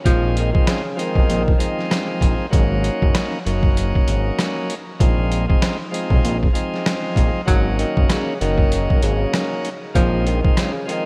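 Boom-bap hip-hop with a reflective, gritty mood, this piece swings its sixteenths in 4/4 and is cut from a longer track. A sampler-style trip hop drum kit sits up front, compressed and pitched down, with a thumpy kick, medium-tuned snare, rim click and hi-hat carrying a tape-softened, small-room character. A fat analog bass, thick and detuned with a sawtooth edge, a filter sweep and sustained notes, holds the low end until about 10.4 seconds. A bright tonewheel organ shouts full, lightly overdriven chords through a stopped rotary speaker and cassette-tape colour, moving between A#9sus4 and G#9sus4 harmonies. A warm tenor saxophone plays a jazz-style solo line with vibrato and breathy subtone, heard briefly at the opening and again from 7.5 seconds, touched by tape echo and set in a light reverb.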